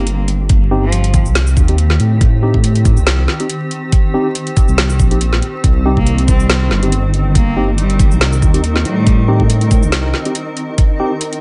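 Deep dubstep at 140 BPM in a half-time feel with a light swing, this heavy, cavernous excerpt sits on a C minor chord in C dorian throughout. An up-front, knocking electronic kick and a saturated, rumbling detuned saw bass anchor the low end, while a garage kit adds a woody snare, metallic hats and shaker, all re-recorded in a small room. A mellow tine electric piano plays stabs through dub echo, and a granular cloud pad holds blurred, evolving chords with a slow attack and long release. A close, bowed cello carries the melody with vibrato and portamento, appearing briefly at the start and returning at 6.0 seconds with dub echo on its expressive line. From 6.4 seconds a flickering, grainy texture drifts in the background, and the whole is framed by a digital ambience of vinyl crackle with a dull, rolled-off top.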